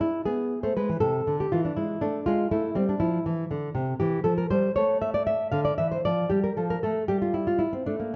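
A solemn, introspective classical dance in a baroque style, this short excerpt cut from a longer piece features a solo nylon-string guitar in 6/8 at 79 BPM, played with a rubato feel. The acoustic guitar sits up front with a warm, thumb-plucked tone, ranging from C3 to F5 as the harmony moves from A minor to D minor at 4.0 s. A moderate recital hall reverb surrounds it in a dark production.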